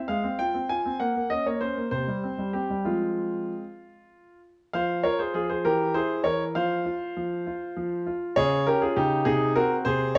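A clear grand piano opens this short excerpt of a classical-period sonatina in F minor, playing by itself in a graceful, playful 6/8 at 66 dotted-quarter beats per minute with a straight feel. The piano sits up front with a smooth, vintage character and long sustain, ranging from C3 up to Ab5. Its phrase is heard twice, the second statement beginning at 4.7 seconds and running to the close at 10.2 seconds. The harmony moves from Fm over Ab through Bbmadd9 and C5 back to Fm, and later brings in a C7b9b13 over E before settling through F5 and Db toward Ab7 over C. A moderate stone-room reverb with a 1.3-second decay surrounds the instrument, and the overall production leans dark.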